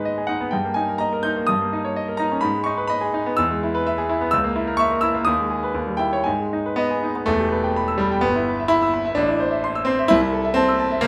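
A bright, up-front grand piano plays alone in this stormy, agitated classical virtuoso study, a short cut from a longer piece, spanning E1 to G6 with brilliant, short-sustained tone and free rubato over a 2/4 pulse before moving into a new section at 7.3 s, captured by close, detailed microphones in a moderate recital-hall reverb.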